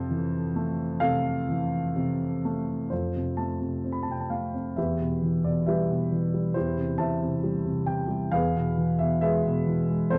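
Heard through a moderate recital-hall reverb with a warm production, this tender, calm classical excerpt features a dark, mellow grand piano up front, its long sustain carrying a lyrical solo part in F lydian at a rubato 61-69 BPM in 4/4, moving from Fmaj7 through F, Em and C/E to an E chord across its 10.2 seconds.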